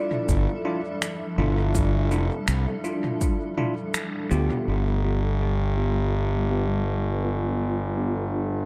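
A straight 4/4 pulse at 82 BPM sets this spacious, hazy ambient dub excerpt in G mixolydian, built on a deep, overdriven electronic kick with small-room reverb and an electronic kit of cabasa, finger snaps and toms carrying small-room reverb and dub echo, while a growly, up-front fuzz bass anchors the low end, a bright, bell-like electric piano plays clean stabs through a low-pass filter and dub echo, a cloudy, detuned granular pad with a slow attack and its own reverb drifts from Dmadd9 to G7 at 4.7 s, and a fingerpicked concert harp rings softly in the background with dub echo only until 1.4 s; the kick drops out at 3.4 s, and a band accent at 3.9 s precedes the kit falling away at 4.6 s.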